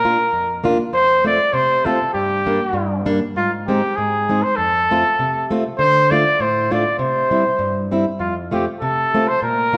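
Alpine folk with a jolly, bouncy lilt, this brief cut from a longer piece sets a mellow, classical-style trumpet with light vibrato and a distant, roomy tone carrying the solo melody up front over a boxy, parlour-style fingerpicked steel-string acoustic guitar, all bathed in a wet recital-hall reverb while the harmony takes a surprising turn through an Ab chord before settling home on F.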